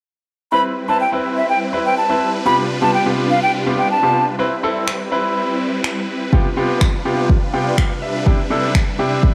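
The rhythm moves in a straight 4/4, and at 4.9 seconds a deep house drum kit of finger snaps and a deep kick joins up front, electronic and layered with a tape-warm, small-room character. This upbeat, carefree dance-pop passage, cut from a longer piece, opens with a breathy, mellow silver concert flute carrying the melody in its upper register until 4.2 seconds, close-miked with vibrato, a crisp chiff on each attack, a slightly unsteady tone and a slapback echo. Underneath, a brilliant concert grand piano plays the accompaniment with deep bass, a polished, present sound and short sustain, and it adds a fill at 7.3 seconds. Huge, lush supersaw chords hold sustained detuned sawtooth harmony through a phaser, and both the piano and the supersaws pump with sidechain compression. The harmony moves from Cmaj7 to G7/C, returns, and settles on Em7/C, all set in a moderate echo-chamber reverb with studio ambience.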